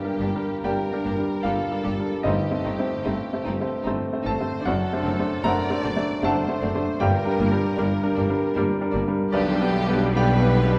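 Passionate and lush, this passage from a longer romantic classical movement for piano and orchestra sways in a flexible, rubato triple metre. A clear, up-front baby grand piano carries the melody with a natural tone and short sustain. A very quiet, distant violin section also carries the tune with soft-attack, expressive vibrato, while a second violin section adds a rich, smooth line of its own. Beneath them, a very quiet viola section fills in the accompaniment with portamento, and from 0.2 s a very quiet, smooth-topped cello section shares the bass with a bright, focused double bass section and a mellow tuba, the latter two sitting in the background. Timpani, struck with soft mallets for a round sound, sounds in the background only until 3.4 s, and the whole ensemble sits in a wet concert hall reverb.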